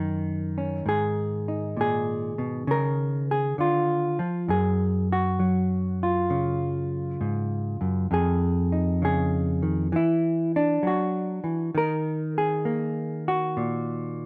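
A clean, fingered hollow-body electric jazz guitar plays alone and up front, its dark tone drifting through a moody, smoky solo jazz passage in a slow swung 4/4. The chords move from a rootless Badd9 through Abm, Db and Gbsus2 before settling on Fm7, Esus2 and finally Ebm at 11.7 seconds. Moderate studio reverb gives the guitar a soft sense of room in this short cut from a longer piece.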